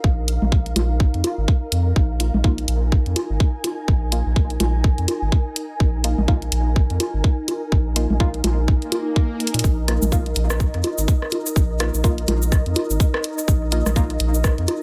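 From the first beat, a tight, up-front electronic kick and a round, deep analog bass with tube saturation and sidechain pumping anchor this cool, clinical minimal techno cut at 125 BPM, swung on the 16ths and resting on a Bbsus4 chord, while an ethereal, airy pad with a slow attack, ensemble chorus and built-in reverb floats above. Layered electronic hi-hat and cabasa join almost at once, along with electronic congas, bongos and rim click that carry an analog delay and the sound of a small room. From 2.2 seconds a muted, detuned dub chord stab with a filter sweep, chorus and tape echo sits in the background, and an electronic swell sounds at 8.9 seconds ahead of a drum fill at 9.4 seconds in this echo-heavy mix with light reverb.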